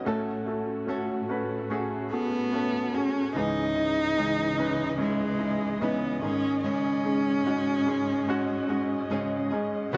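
A dark, warm mix with light reverb, small-room ambience and a faint mains hum frames this slow, longing pop passage at 73 BPM in straight 4/4. A polished grand piano sits up front with the accompaniment, a fingerpicked flamenco guitar plays arpeggios, and a smooth-topped studio string section holds expressive sustained chords with portamento, moving from F#m/A through C#madd9 to G#sus4. At 2.1 seconds a rich, nasal solo cello enters up front with the bowed melody, singing with vibrato until 9.1 seconds.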